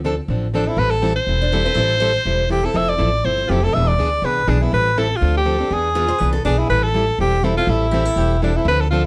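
A fiery swing rhythm at 243 BPM in 4/4 drives this short cut of acoustic string swing in A minor, with a boxy plugged-in steel-string guitar picking the accompaniment and a woody, thumpy upright bass on gut strings sitting up front. A close-miked, bright alto saxophone enters at 0.6 seconds to carry the jazz solo melody with scooped notes. A quieter parlour-toned picked steel-string guitar adds a second line with slapback echo from 1.4 seconds and again from 6.0 seconds, all within a light reverb.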